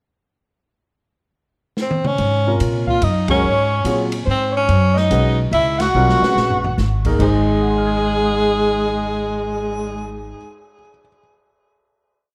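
Modal jazz in a swung 3/4 at 144 BPM, this short, complete piece has a hypnotic, searching mood, its dreamy mix soaked in plate reverb as it moves from Ab9sus4 through Gbsus24 to a closing Ab chord held from 7.2 seconds. An edgy, forceful tenor saxophone with vibrato and a touch of delay carries a motif-based melody of call phrases, doubled at the octave by a smooth-topped alto saxophone, while an upright bass walks with a woody, dark pizzicato tone. A warm concert grand piano comps in syncopated quartal voicings with audible action noise and rings on alone to the end, and an airy drum kit with dark cymbals and a boomy kick keeps a ride pattern, adding fills around 1.8 and 5.9 seconds.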